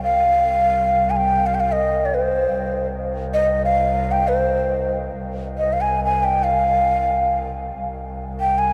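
Persian modal ensemble music in free time, this short passage cut from a longer piece carries a soulful, melancholic mood. A breathy, mellow ney carries the melody throughout, its end-blown reed-cane tone straight and tongued, with rolled-off highs that keep it soft-edged as it sits up front in the sound. Beneath it, a single bowed double bass holds a low drone, bright and focused with vibrato, placed at a distance and well below the ney in level. Both parts sound together from the opening to the close at 8.7 seconds, with the material restating itself after 5.2 seconds. A huge, wet ambient reverb with a long decay of 7.9 seconds places the pair in a vast, echoing space, letting each phrase hang and blur into the next.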